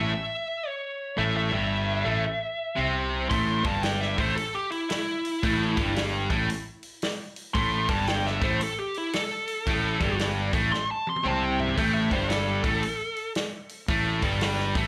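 Gritty and raunchy, this blues rock power trio excerpt with a southern rock edge swings at 114 BPM in 4/4, as a bluesy overdriven lead guitar with slapback echo sings a melody over a bright, double-tracked distorted riff guitar and a growly fuzz fingered bass on an A5 chord, while a vintage drum kit with a punchy kick and rolled-off top joins at 3.3 seconds and plays a fill at 10.7 seconds, all heard live through a club PA with light reverb.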